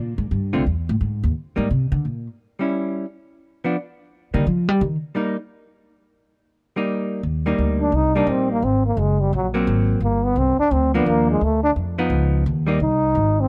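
A breathy, whispered trombone takes a close, intimate solo from 7.8 seconds, its soft attacks, scooped notes and light vibrato giving this late-night, moody small-group swing and bop excerpt in C minor its voice at a brisk 173 BPM. Before it, the upright bass opens with a woody, dark pizzicato solo on steel strings, while a clean, fingered hollow-body electric guitar accompanies up front with shadowy chords. The dry, close sound of a small room recalls a 1970s-style studio session.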